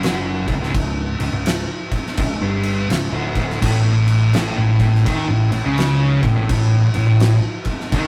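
A thick, fuzz-drenched electric guitar stands up front in this heavy, ominous stoner and doom metal excerpt at 84 BPM in a swung 4/4, picking a distorted riff from the start alongside an oversized, low-tuned acoustic drum kit with a punchy kick, fat snare and crash cymbal in a bright, pumping stone room. A growling fingered bass, overdriven and amped, sits in the background, and at 3.6 s a second, darker distorted guitar joins behind the mix as the harmony moves from Dmaj7/C# to A5. The rough rehearsal-room sound carries tube saturation and a moderate small-room reverb.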